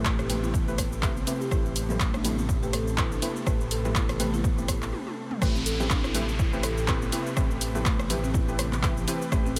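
Afro house with an earthy, hypnotic pull, where a punchy, overdriven electronic kick and deep house kit of handclaps, hi-hat, rim click, shaker and toms drive a rumbling detuned saw bass, while a buzzing, woody marimba arpeggiates in the background beside warbling chord stabs, an ethereal airy pad and very quiet ringing congas, with the bass, marimba, stabs and pad all riding sidechain pumping, before a drum fill at 4.9 seconds leads into a drop at 5.4 seconds where a background downlifter enters.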